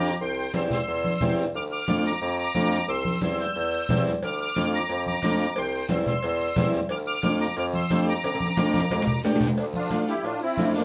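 A straight, driving 4/4 cumbia groove at 179 BPM sets the pace, with ringing, medium-tuned congas played with soft hands and a raspy guiro sitting close and dry in the background. Up front, a reedy, shimmering musette accordion carries a passionate melody in D minor over a simple back-and-forth between C and D minor chords. A clear bassoon, also up front, supplies the bass line in a classical style with light vibrato. A vintage overdriven combo organ fills in the accompaniment with a buzzy tone and heavy vibrato. Ringing metal-shell cowbell and timbales join at 4.2 seconds, and a drum fill at 8.2 seconds pushes into a new section just before the clip ends. The band plays live together in one room, bathed in a wet, large studio reverb.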